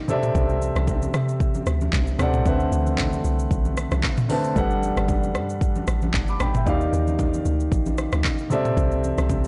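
Amapiano at 114 BPM in G major, relaxed and warm, with a gentle sixteenth-note swing, in a short cut from a longer piece. An up-front concert grand piano with deep bass moves through C6, D13, Gmaj7 and Ebmaj9 chords, while a dark, round log drum bass with a fast, decaying attack enters at 0.3 seconds beneath an electronic drum kit of deep kick, metallic hi-hats, handclaps, rim clicks, shaker and toms. Ringing conga hands sit distant in a large room, and the dry mix is blown-out and overdriven with a dulled top end.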